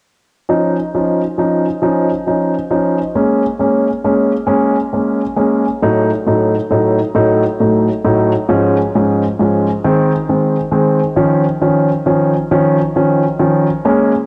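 Pop in Db major, tender and romantic, moving slowly in 6/8 at 45 BPM (dotted quarters): a concert grand piano plays accompaniment from 0.5 to 14.1 seconds in an intimate, up-front voice with deep bass, long sustain and audible action noise, colored by cassette tape and set in a lush hall reverb on a home cassette recording, as its chords move from Dbadd9 through Bbm7, Gbm6/A, Db/Ab and Ab before a new section returns to Dbadd9 at 11.2 seconds in this passage cut from a longer piece.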